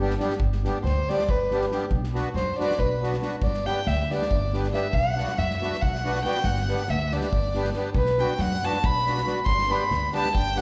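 A dark, intimate violin sits up front with an airy, sul tasto bow, soft attack and light vibrato, taking a solo from 0.4 seconds in this wild, exuberant Balkan wedding-band cut in 7/8 that alternates between G and Bm. Beneath it, a reedy, sweet accordion with light tremolo tuning supplies accompaniment, a woody, thumpy pizzicato upright bass holds the low end, and a loose acoustic drum kit with a punchy kick and medium-tuned snare joins at 0.1 seconds in a small, pumping room. The whole band is heard from further back in a wet recital hall.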